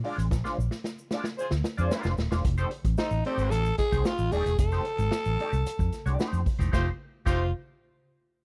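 Gritty and energetic, this funk excerpt in F mixolydian moves at 112 BPM in a straight 4/4, opening with a drum fill and band accent over a rootless Bb9 before settling onto F9 at 2.4 seconds. A dark, boomy big-band drum kit and a round, foam-muted fingered electric bass sit up front, while a clean semi-hollow electric guitar with wah comps, a grainy tube shaker hangs in the background, and a distant, loose horn section with vibrato joins at 1.4 seconds. At 3.0 seconds a raspy tenor saxophone takes the melody with scooped, growling notes, all captured in a dry, close 1970s-style studio sound with a small room reverb.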